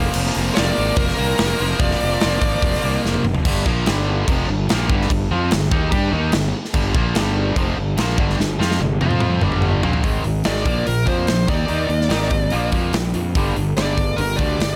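A sludgy, double-tracked distorted guitar leads this menacing hard rock excerpt, its bright, overdriven picked riff pushing a driving straight 4/4 groove from the first moment to the end. Beneath it, a fuzz-laden fingered electric bass sits up front with punchy, overdriven weight, while a big acoustic rock kit with bright cymbals, a medium-tuned snare and a punchy kick pounds away in a big room. A dark, bluesy lead guitar, distorted and picked with a slapback echo, cuts in from 0.5 to 3.0 seconds and returns at 10.5 seconds for the closing stretch. Drum fills mark the turns into each new section, the second one stretching from 8.4 to 10.0 seconds before the music shifts onto power-chord movement. The sound is dry and close, with little reverb, keeping the riff and rhythm section tight and confrontational as the passage is cut short.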